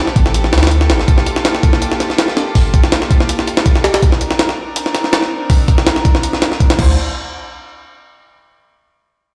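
Dark and frenetic, this short fragment of drum and bass with a jungle edge runs at 163 BPM in a straight 4/4. A rich chamber string section holds bowed, sustained chords through the opening section, its close, earthy ensemble sound carrying light vibrato and a coat of vintage 12-bit sampler grit as the harmony moves from Am9 through Gm9 and Cm9 to Dm9. Up front, a compressed, pitched-up jungle sampler-style kit drives crash cymbal, hi-hat, a thumpy kick and a high-tuned snare, its tape-tinged character set in studio reverb. A deep, boomy 808-style bass with a sine core, a noise layer and a fast, decaying attack appears only briefly, from 0.2 to 1.1 seconds and again from 6.8 seconds. The whole piece sounds as if played on a big sound system in a bare room, with a large studio reverb around it.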